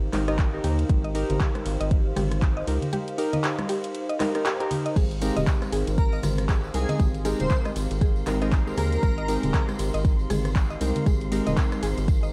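A swung 4/4 groove at 118 BPM anchors this soulful, sunny deep house excerpt in Ab major, driven by a deep, up-front electronic kick with 12-bit sampler grit and an overdriven house kit of claps, hi-hat, ride, rim clicks and crash, joined by small-room congas. Underneath, a rubbery, nasal square bass bounces in the low register, pumping against the kick alongside round analog key stabs that carry chorus, delay and sampler grit. A woody, mallet-like synth pluck spins bright arpeggios in the background through chorus, cassette tape color and delay, while a cloudy granular pad drifts behind everything in its own reverb. At 5.0 s the harmony moves from Eb over Ab to Abmaj9, and a jingly tambourine and a silky, phased string machine enter quietly in the distance. An airy, dreamy lead with vibrato and tape echo sings a brief phrase from 6.0 s to 9.6 s, all over a dry mix dusted with vinyl crackle.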